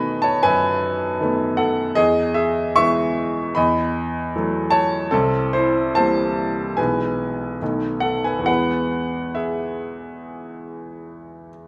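A clear, intimate grand piano sits up front, its action noise audible, playing a romantic classical character piece in E major at a flexible 67-78 BPM in 4/4 with a warm, passionate rubato feel. Across this 11.7-second passage cut from a longer work, the solo piano spans B1 to C#6, moving from B7 to E, through F#m7/E and a striking C7, then settling back to E by 8.5 seconds. A moderate recital hall reverb gives the natural-sounding instrument a sense of space.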